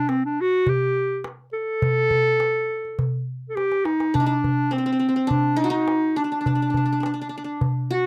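A straight 104 BPM pulse in 4/4 from an up-front darbuka with a clay shell and natural skin drives this soulful, hypnotic Arabic maqam ensemble excerpt in D maqam hijaz. A warm, smooth-topped clarinet in classical style carries the solo melody from C4 to A4, and a drum fill at 3.6 seconds leads into a quieter second line from a bright qanun, played with fingerpicks on triple strings, which enters at 4.1 seconds, the whole captured as a dry, close 1970s-style studio recording with light reverb.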